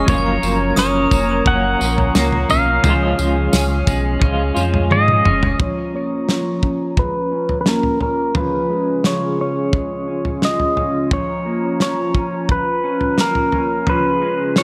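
A loose indie drum kit sets a straight 4/4 pulse at 87 BPM, its tight kick, medium-tuned snare, tambourine and toms sounding close and up front, with a fill leading into a filter sweep at 5.6 seconds. This cut from a longer dream pop piece feels blissful and ethereal, moving from F#maj7 to C# and then alternating between A#m/E# and C#. Out front, a clean pedal steel guitar carries the melody with fingerpicked slide lines and volume swells, softened by a low-pass filter and trailed by delay. Beneath it, a clean electric guitar plays dark, picked arpeggios through lush chorus and delay, while a hollow, flute-like pad holds detuned, nasal chords. A deep sine sub bass with an added octave sustains under the opening section until 5.6 seconds, and a semi-hollow electric guitar adds fingered, trembling accompaniment in the background until 6.1 seconds. A sparkling, bell-like glockenspiel struck with brass mallets rings faintly through delay for the first 1.8 seconds, all set in a moderate concert hall reverb.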